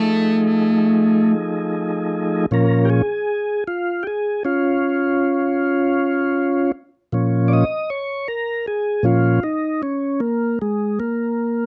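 A tonewheel organ carries this mournful, smoky slow blues in Bb minor, holding smooth, key-clicking sustained chords through a slow rotary speaker from the start to 11.7 seconds and taking the solo from 2.5 seconds as the harmony moves from F7#9 to Bbm. The excerpt opens with a bright, overdriven semi-hollow guitar picking a brief melody that sits up front until 1.3 seconds. The 12/8 pulse moves at 52 BPM in dotted quarters, captured as a dry, close 1970s-style studio recording with light reverb.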